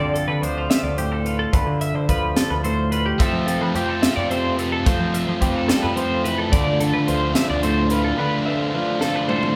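Wistful and intricate, this short cut from a longer math rock and midwest emo piece moves at 72 BPM in a straight 6/8, shifting from Dm7 to Fmaj7 and back to Dm7. A clean, fingered electric guitar with a twangy edge carries the accompaniment from the start, while a bright twelve-string electric guitar picks arpeggios up high, its sound shimmering through harmonic tremolo. A growling picked bass, overdriven and amped, holds down the low end until 8.1 seconds. The crisp fusion drum kit sits up front with an airy, polished studio sound, a high-tuned snare and a tight kick, and it closes with a fill at 9.0 seconds. At 3.2 seconds a double-tracked, overdriven guitar joins up front with a riff, and the whole blend sits in a wet recital hall reverb that suggests a church or concert hall.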